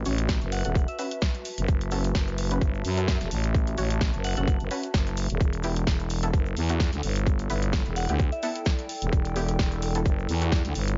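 A growling, thick FM bass drives this bouncy, aggressive bass house excerpt in F# phrygian at 129 BPM, its tube-saturated tone pumping against a tight, up-front electronic kick while a house kit adds a punchy snare and hi-hat and a grainy tube shaker ticks very quietly beneath a swung 16th-note feel. Bold, detuned sawtooth stabs with an orchestra-hit character sit in the background under a filter sweep, treated with reverb and delay, as a nostalgic, lo-fi pad with a dark, warbling square-and-triangle tone breathes with the sidechain. A pure, vintage synth bell with chorus and phaser surfaces in short phrases near 0.5, 4.2 and 8.0 seconds, over a harmony that moves from F#m to Em at 5.4 seconds.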